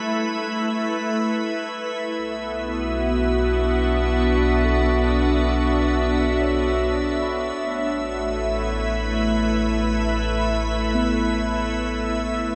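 Weightless and peaceful, this ambient fragment in 3/4 sets a pure, organ-like pad of sustained chords up front in a vast cathedral reverb, with a barely audible, warbling analog drone beneath its opening, a deep, round sub bass arriving at 2.2 seconds, and muted, felt-like synth keys fading in from 2.7 seconds with dark, chorused and delayed arpeggios in the background.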